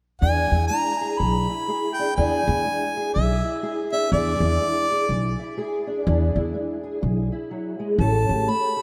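Soaked in a lush hall reverb that gives the mix a dreamy haze, this soulful, gritty fragment of swung acoustic country blues puts a close-miked, jazz-style harmonica up front on the melody, over a dark, boxy, fingerpicked ladder-braced acoustic guitar with ensemble chorus and a woody, thumpy pizzicato upright bass on steel strings, the harmony resting on E7 before moving to A7 at 8.0 seconds.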